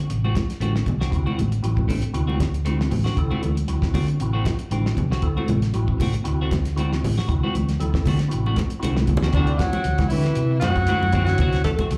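Funky and driving, this 117 BPM afrobeat excerpt in D mixolydian rides a cloth-damped, thuddy drum kit with a fat snare and tight kick, an up-front dark, round fingered electric bass, ringing close congas in the background, hollow-body semi-hollow guitar stabs with subtle chorus and slapback echo, very quiet clean electric guitar arpeggios, and a mellow, flute-like tonewheel organ with key click through a fast rotary speaker from 1.1 seconds, until a drum fill at 8.8 seconds ushers in a clear, close-miked alto saxophone melody at 9.3 seconds, joined at 9.4 seconds by a raspy, gritty tenor saxophone second line beneath it, all heard as a live gig through the venue's PA with club reverb.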